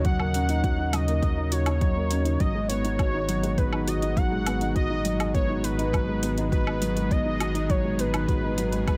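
Piano and strings electronica in G# minor at 102 BPM, this brief excerpt from a longer piece has an intimate, cinematic mood in a straight 4/4. A felt-muted upright piano carries the riff with a soft, boxy, dark tone touched by digital delay, while a velvety synth lead with vibrato sings the melody between B4 and F#5 through chorus and delay. Beneath them, a lush unison pad holds thick, detuned sustained chords in the background, its slow attack and long release shaped by chorus and sidechain pumping. A round analog bass, deep and sustained, also pumps with the sidechain, and an electronic kick drum with a tape-warm, deep character sits prominently alongside hi-hat and woodblock with metallic hats. The chords move from D#m7 to G#m7 at 2.4 seconds, and the whole 9-second passage sounds close and dry, with little reverb.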